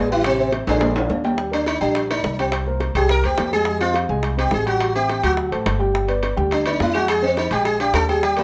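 A fast, straight 4/4 pulse at 210 BPM drives this lively, sunny slice of Afro-Cuban jazz in Eb major, with tight, high-tuned bongos sitting in the background and ringing metal-shell timbales giving a vintage, band-limited edge. A pizzicato upright bass with steel strings anchors the low end in a woody tone, while a dark, intimate upright piano supplies mellow chordal accompaniment, its action noise audible beneath the harmony. At the opening, a breathy tenor saxophone adds a subtone second line with vibrato and scooped notes, dropping out at 1.1 seconds. A drum fill from 0.7 seconds leads into a sitar solo at 1.4 seconds, and the plectrum-plucked sitar sits up front with a bright, buzzing sound, its sympathetic strings shimmering over chords that move from Ebmaj7 through Fm7 and D7 to G. A moderate studio reverb lends the ensemble a sense of room.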